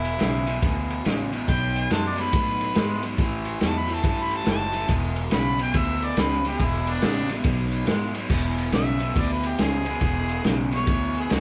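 A bright, close-miked harmonica takes the solo throughout this rollicking yet laid-back electric blues shuffle, its overdriven tone carrying light vibrato, a soft attack and scooped notes in a jazz-style phrasing that ranges from D4 to B5. Set in E mixolydian at 141 BPM in 4/4 with a swung eighth-note feel, the excerpt moves through chords of E5, B5 and A5 before reaching E6 at 8.3 seconds, where the section begins again. A crunchy, picked electric guitar sits up front with a low riff, while a fingered electric bass gives a round, foam-muted bottom end recorded both direct and through an amp. The vintage acoustic drum kit sounds lo-fi and muffled with a rolled-off top, pairing a punchy kick and medium-tuned snare with ride and crash cymbals in a small-room character. The whole band plays live in one room, bathed in a wet, large studio reverb with a 1.4-second decay, and the passage is cut from a longer piece.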